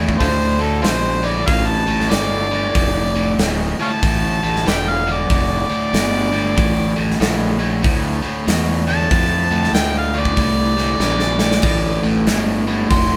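An overdriven harmonica takes a gritty, amplified solo across the whole clip, with light vibrato, tongue slaps and scooped notes, over a smoky, heavy blues rock and southern rock groove in D minor at 94 BPM with a swung 4/4 feel. A bright, double-tracked overdriven electric guitar riff sits up front alongside a growly fuzz bass, while a big acoustic rock kit with a punchy kick, medium-tuned snare and bright hi-hat and splash cymbals drives the trio, dropping in a fill at 11.0 seconds. The band sounds live in one room with light reverb, and this excerpt is cut from a longer piece.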